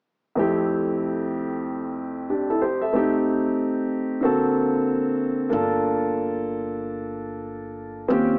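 A dark, mellow, vintage baby grand piano opens at 0.4 s, sitting up front with long sustain as it moves through Fmaj9, Am7b5 and D7b13 in F major. This cool, smooth hip hop fragment runs at 93 BPM with a 16th-note swing. At 5.5 s a woody, thumpy pizzicato upright bass enters under the Gm9 chord, and light reverb and a small-speaker sound color the whole passage.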